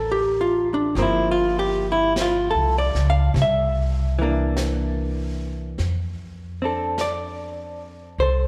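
A dark, clean hollow-body electric guitar sits up front, picking compressed chords from Bb6 through Gm7 and C9 to a closing F6 in this tender, intimate jazz ballad in F major, cut from a longer piece and swinging gently at 50 BPM in 4/4. Close beside it, a woody pizzicato upright bass plays the low line, while a brushed drum kit with a high-tuned snare and hi-hat enters softly at 1.0 s. A moderate church reverb surrounds the trio, lending the intimate playing a spacious, hall-like glow.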